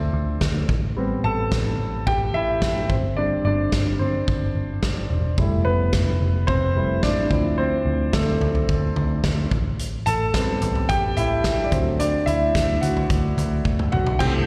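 Piano-driven pop at 109 BPM in a straight 4/4, uplifting and warm in mood, with a polished, long-sustaining grand piano carrying a solo up front from the start over chords moving through Dm7, Am7, Gsus4 and Fmaj7. A round, foam-muted vintage electric bass and a loose indie drum kit with a fat snare, punchy kick and dark cymbals support it, the drums closing the passage with a fill at 13.7 seconds. At 14.2 seconds a smooth tonewheel organ with chorus vibrato and key click briefly joins in the background alongside a woody, full-bodied plugged-in acoustic guitar, all heard as a live gig through the venue's PA with recital hall reverb.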